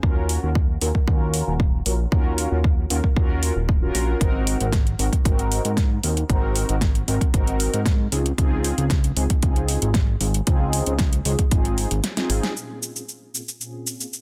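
A punchy, overdriven electronic kick sits up front in this groovy, cosmic nu-disco excerpt, layered with a pop drum kit of a fat snare, metallic hi-hats and cabasa that shares its overdrive and small-room character. Beneath them, a thick analog bass of detuned sawtooth tones sits up front too, with fast attacks, sustained notes and a filter sweep. Mellow synth brass fills in the chords with a dark, round, brassy sawtooth sound, colored by chorus, phaser, tape echo and sidechain pumping. The harmony moves through Ebm9, Ab7 and Dbmaj7 over a straight 4/4 groove, set in a digital ambience with a dense, heavily limited modern master. At 12.0 seconds the kick drops out for a drum fill, and from 12.6 seconds a new section on Bbm7 brings a filter sweep as the piece is cut off.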